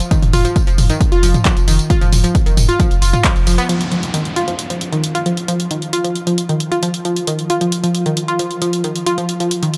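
Driving peak-time techno with a dark, intense mood, this excerpt opens on a drop. A punchy, tape-warm kick and a thick, saturated sub bass, pumping under a low-pass filter, sit beneath an analog drum machine of handclaps, hi-hat, tambourine and toms, with a band accent at 3.2 seconds just before kick and bass stop. Throughout, a bright, detuned analog pluck carries the riff up front, its wave-folded tone given chorus, tape echo and sidechain pumping. After 3.7 seconds a downlifter sweeps through, and from 5.1 seconds a mellow, swarming drone with granular, evolving texture and its own reverb hovers tensely in the background.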